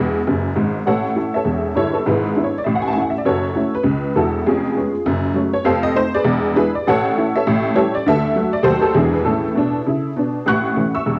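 Stride jazz with an exuberant, playful swing, carried entirely by a solo honky-tonk upright piano whose detuned, jangly, woody, vintage, boxy tone sits up front with short sustain and spans from deep bass to bright treble. A brief fill opens the cut before the main section begins at 0.9 seconds, moving through minor-seventh and diminished passing chords on its way home to A. Light reverb and a small-room ambience give this home cassette recording an intimate feel, and the passage is clipped from a longer performance.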